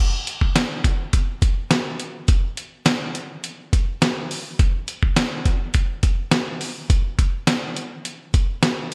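A bright, digital 1980s-style production with light reverb frames this short, glossy and romantic pop cut, moving at 104 BPM in a straight 4/4. A dusty, sampler-style soul drum kit enters at 0.3 seconds and carries on to the end at 8.9 seconds, sitting up front with a thumpy kick, a fat snare and hi-hat. Compressed and gritty, the kit carries gated reverb and the roomy character of being re-recorded in a large space.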